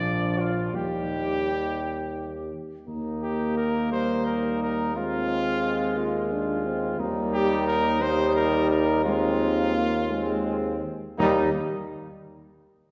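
Noble and triumphant, this short classical brass quintet passage moves at an unhurried pace in a straight 6/8, cut from a longer piece. A mellow cornet carries the melody up front with light vibrato and a smooth top, while a flugelhorn, similarly mellow but more distant and roomy, sings a second line beneath it. A dark French horn sits in the background, and a warm trombone with a smooth top joins it in the accompaniment. A warm tuba anchors the bass, placed up front. All five play throughout, and the harmony settles through dominant and subdominant colours over a held Eb foundation before coming home. The ensemble is heard from further back in a concert hall, with a generous, wet reverb that lingers around the chords.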